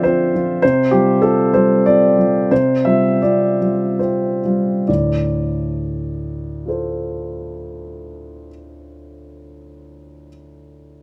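In a rubato 3/4 that moves between 67 and 104 BPM and slows through the first 4.9 seconds, this short fragment of neoclassical minimalist piano music in D minor feels reflective and wistful. A solo concert grand piano, warm with a deep bass and placed up front, ranges from D2 to E5 over a Dm7 that moves to Csus4 and returns to Dm7 at 4.9 seconds. The close, detailed miking and dry room keep every note intimate and clear.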